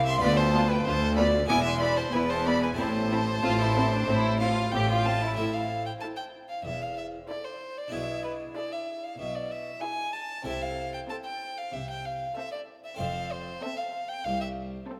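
Festive and lively, this baroque-style concerto movement in A minor at 94 BPM sets a rich, up-front solo violin with vibrato over a focused, close violin section carrying the melody higher, a second, intense violin section on a smooth inner line, a viola section in the background, a clear but distant cello section and a focused double bass section anchoring the bass, and an airy, plucked harpsichord with two sets of strings, the ensemble placed in a wet scoring-stage reverb as the harmony moves through E and A minor to F.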